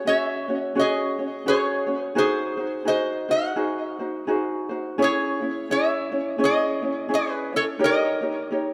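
Languid and relaxed, this short Hawaiian excerpt in C# minor moves at 85 BPM with a gentle eighth-note swing, as a bright, metallic, nasal resonator slide guitar played with fingerpicks carries the melody through analog delay over a light, thumb-plucked ukulele accompaniment, both up front in a moderate concert hall reverb, across chords moving from F#sus2 through G#7 and C#m to D#7.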